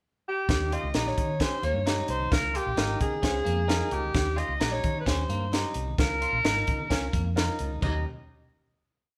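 A breathy, whispered alto saxophone pickup at 0.3 s opens this uplifting and danceable uptempo 1960s-style soul piece at 131 BPM in Eb mixolydian. From 0.5 s a dry, punchy cocktail drum kit with a high-tuned snare on all four beats, a round, foam-muted fingered bass with a syncopated melodic line, a baby grand piano playing close-voiced quarter-note chords in the background and very quiet, bright congas join in, followed at 0.7 s by a twangy electric guitar figure at the edge of break-up, all supporting the up-front, motif-based sax over Eb7 and Db6 in a live-room sound with moderate studio reverb, before everything settles on a final Eb7 chord.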